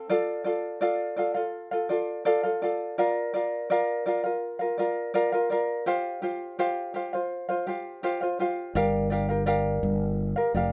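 A fingerpicked tenor ukulele opens this short acoustic pop excerpt, its light, up-front tone carrying a heartfelt, sunny mood in a straight 4/4 feel. The ukulele plays accompaniment, moving from Dm to Bb and then to Csus4. At 8.8 seconds a fretless electric bass enters low and close, its sustained, growly sound adding weight as the harmony shifts to Gm7. Both instruments play until the cut at 10.7 seconds. The pair sounds like a band playing live in one room, with moderate studio reverb lending a natural sense of space.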